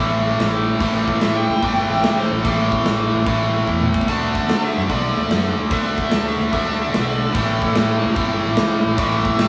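A biting, double-tracked overdriven guitar sits up front, picking a bright, raunchy riff that anchors this gritty blues rock and southern rock passage, cut from a longer piece with a swung 4/4 feel. Beneath it, a fuzz-laden picked electric bass adds overdriven weight from the very start. The huge arena drum kit enters at 0.4 seconds with a punchy kick, a medium-tuned snare, toms and glittering crash cymbals, its pumping hall sound giving the beat real force, and it plays a fill between 3.7 and 4.1 seconds. A smooth overdriven lead guitar joins at 1.2 seconds, tucked in the background with a warm tone as a second line in a higher register. The harmony moves from A5 to D5 and back to A, and the whole trio sounds like a band playing live together in a small stone room with a wet, lingering reverb.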